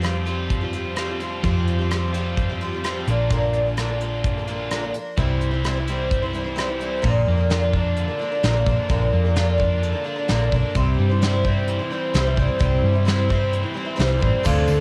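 Recorded at home on cassette with light reverb, this short cut of nostalgic, open-road folk rock and heartland rock moves in a straight 4/4, with the chords shifting from Fsus2 through Bb and C. A shimmering, octave-doubled twelve-string acoustic guitar sits up front with audible finger squeak, a round hollow-body electric bass anchors the low end, a double-tracked overdriven electric guitar carries a crunchy riff, and an airy brush kit with a tight kick, rim clicks, hi-hat and crash keeps time. Only at 14.4 s do a woody, mellow upright piano and a jingly tambourine in the background slip in before the cut ends at 14.8 s.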